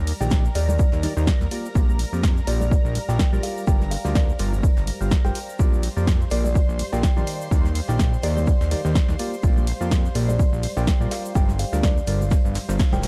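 A punchy electronic kick drives this joyful, feel-good piano house groove at 125 BPM in Bb major, with a fat, saturated analog bass pumping up front, a hollow, percussive organ stab riff with chorus and delay, a woody kalimba melody carried by delay, a silky string pad in the background, a very quiet, warbly lo-fi tape-like pad, an analog drum machine playing hi-hat, ride, shaker and snare, a very quiet brush drum kit, and soft tambourine and congas, over Bb6 and Gm7 chords in a dark small-room production that ends on a band accent at 12.8 seconds.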